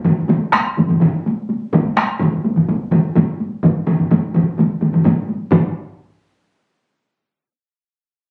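Caught on a phone in a wet, booth-like room with added studio reverb, this brief cut from a longer piece of driving, powerful Japanese traditional taiko music in a straight 4/4 layers three hard-stick taiko ensembles, one close and dry, one ringing in a live room and one miked close, with a heavy-stick solo taiko joining at 0.5 s from a small room, while the whole passage speeds up as it moves into a new section at 5.5 s.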